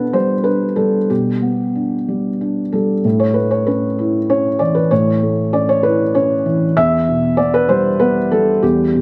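A felt-muted upright piano plays alone through this fragment of neoclassical minimalist music, its thick felt giving a dark, intimate, vintage tone that sits up front in a light reverb, ranging from E2 to E5. The mood is hopeful and peaceful, in 3/4 with uneven, rubato beats and tuned slightly below standard pitch. The harmony moves from G/B to A at 3.0 s, where the opening phrase returns, and settles on Em at 6.8 s.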